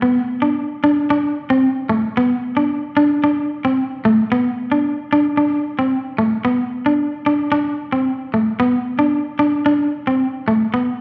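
A clean, picked electric guitar sits up front, playing a solo line between A3 and D4 in a sunny, warm highlife mood at 112 BPM in a straight 4/4. The short cut from a longer piece shifts into a new section at 4.3 seconds and runs to about 11 seconds. A large, wet studio reverb and the grain of cassette tape give it the feel of a band captured live in one room.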